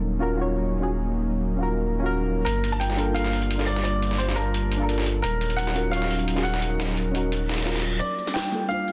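A lush, melancholic stretch of liquid drum and bass at 173 BPM opens with a smooth, detuned sawtooth pad holding chorused chords over a round sine sub bass, while deep, mellow chord stabs with chorus and dub echo enter at 0.2 seconds, their tone evolving under a filter sweep. The harmony moves between Ebm7 and Gm7. Around 2.4 seconds a brilliant, intimate baby grand piano takes the melody, its short sustain and audible action noise carried on a delay. A gritty, overdriven sampler-style kit of hi-hat and medium-tuned snare arrives at 2.5 seconds, its small-room sound thinned by high-pass filtering and treated with a filter sweep. A reverse cymbal and riser rise in the background before a crisp, cracking garage kit takes over up front at 8.0 seconds, its tape-tinged hats and snare re-recorded in a large room, all within a dense, heavily limited master with light reverb.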